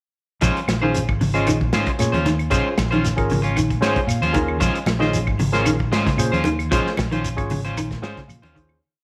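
A straight 4/4 afrobeat groove at 114 BPM in Bb minor rides on a crunchy, saturated breakbeat kit with a punchy kick and rolled-off top, a round, amped fingered bass riff, soft-handed congas, a grainy shekere and a woody five-stroke clave line sitting in the background. Over a Bbm9 chord, a dark clean guitar picks an arpeggiated ostinato with ensemble chorus, a twangy, slightly broken-up guitar up front strums upper chord shapes through slapback echo, and a barky, lightly overdriven tine electric piano punches rootless syncopated stabs, adding fills along the way. The intense, hypnotic piece sits in a small echo-chamber ambience and fades out from 6.7 s, with a drum fill arriving at 8.3 s.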